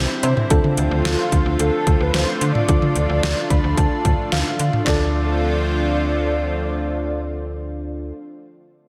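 A soft, round FM electric piano, a lush detuned unison pad and a snappy, metallic FM bass open this melancholic, nocturnal synth-pop passage in D minor, moving from Cadd9 to Dm7 at a straight 110 BPM in 4/4. A punchy, up-front electronic drum kit with deep snare, metallic hats, kick, toms and handclaps drives the groove, and a dark, brassy synth lead carries the melody from 1.0 seconds, its sawtooth tone shaped by a filter sweep. The chorused electric piano plays a fill from 3.2 seconds. After a fleeting touch at 0.2 seconds, a polished baby grand piano returns at 4.9 seconds with a brief high second line in the background, treated with delay and slapback echo, and the drums drop out just after, at 5.0 seconds. A recital-hall reverb gives the mix a big arena sound, and the passage is cut from a longer piece.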